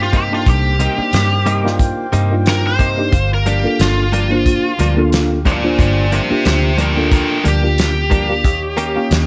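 A biting, overdriven lead guitar sits up front and solos through this smoky, soulful straight-eighth soul blues excerpt in G minor at 90 BPM, moving over Cm7, Gm7 and Eb7 chords. Beneath it, a reedy electric piano with phaser comps alongside a dark, foam-muted vintage fingered bass, while a direct-recorded clean electric guitar adds compressed, picked stabs from 0.1 s to 9.0 s. A soul drum kit with a fat snare, tight kick and rolled-off top plays hi-hat, kick and snare in a small room, and a mellow jazz-style horn section holds sustained chords with light vibrato in the background of a dry mix.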